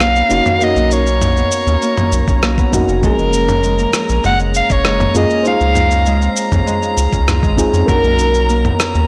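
A breathy, whispered soprano saxophone carries an intimate, up-front melody over a round, deep analog bass, a warbling vintage FM electric piano with chorus and tremolo, ringing fingerpicked Celtic harp arpeggios, a glassy drifting-harmonics texture, and a gritty, tape-warm sampler-style soul kit of rim click, shaker and toms, joined by a thumpy electronic kick from 2.3 to 8.0 seconds, in this smooth, warm sunset chillout excerpt whose blown-out, overdriven sound sits in light reverb.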